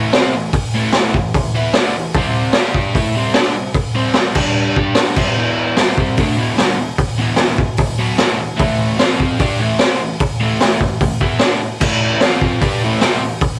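An overdriven, double-tracked electric guitar riff opens this swaggering, menacing garage rock cut at 149 BPM, its picked power chords circling A5, C5, G5, an Em and F5 as a gritty, saturated, rolled-off acoustic drum kit with a punchy kick, medium-tuned snare, hi-hat and crash sits up front beside it, both parts carrying the lo-fi grain of a home cassette recording in light reverb.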